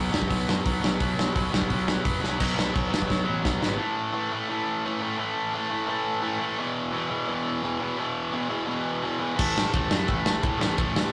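A straight, driving 4/4 at 172 BPM powers this rowdy, rebellious punk rock excerpt, with a loose, mid-forward indie drum kit and a growly, fuzz-soaked picked bass pushing a bright, double-tracked overdriven guitar riff through B5 and A5, then E5 and A5. The drums throw in fills before the bass and kit drop away around 3.8 seconds, leaving the guitar alone until they crash back in at 9.4 seconds. The rough rehearsal-room sound carries light reverb and tube saturation, with the guitar and the punchy kick sitting up front.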